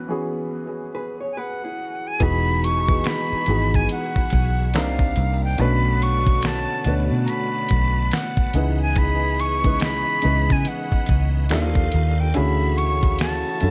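This is a soulful, sensual stretch of neo-soul R&B, cut from a longer piece, moving at a slow 71 BPM in 4/4 with a swung sixteenth-note feel. It opens on a worn, intimate grand piano with audible action noise and a dub echo, joined at 0.9 seconds by a brief line from a clean, hollow-body jazz guitar, and at 1.3 seconds by an airy, reedy flute melody with vibrato, a crisp chiff and its own dub echo. At 2.2 seconds the break gives way to the full groove: a gritty, sampler-style drum kit with a thumpy kick, fat snare, hi-hat and finger snaps sits up front beside a round, punchy, foam-muted electric bass. Behind them, a piping tonewheel organ holds sustained chords through a slow rotary speaker and chorus vibrato, with audible key click, while a mellow, tight saxophone section adds echoed stabs and a close, dry egg shaker with snaps ticks quietly underneath. The harmony drifts through lush ninth chords, from Emaj9 through Cm9, Bm9 and C#m9 to closing D#maj9#11 and Dmaj9#11 colours, all set in an echo-heavy studio ambience.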